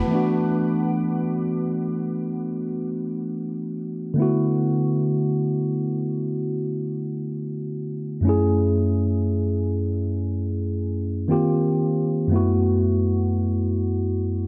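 A dreamy mix soaked in a lush hall reverb wraps this short, unmetered R&B passage, taken from a longer piece, in a romantic, tender haze. Carrying the accompaniment for the full 14.5 seconds is a mellow tine electric piano, clean and direct, sitting up front with a subtle chorus. At the very opening, a glassy FM synth bell rings a single crystalline, warbling A5 in the background, bright and vintage in color, its chorus and delay trailing off within its long release by 0.6 seconds. The harmony drifts through soft extended chords, from E9sus4 to D6 and on to F#m9 at 8.2 seconds, before passing through D#6 and settling on B7sus4/F#. The overall effect is intimate and suspended, the piano's gentle voicings blooming into the spacious reverb.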